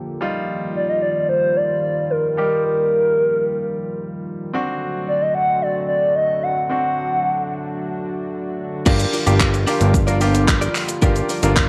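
A bright concert grand piano and a shimmering, retro pulse-width pad open this bittersweet yet confident dance-pop clip in G minor at 111 BPM, both pumping to the sidechain under light reverb, and at 0.8 seconds a hollow, woody clarinet-like synth lead takes the melody up front with chorus, vibrato and tape echo. At 8.9 seconds the drop arrives on a Gm7 chord, bringing in a fat, detuned analog bass on a sustained G1 with a filter sweep, a punchy, tape-toned house kit of kick, handclaps, hi-hat, shaker and crash, and a clean, picked electric guitar riff sitting in the background with analog chorus.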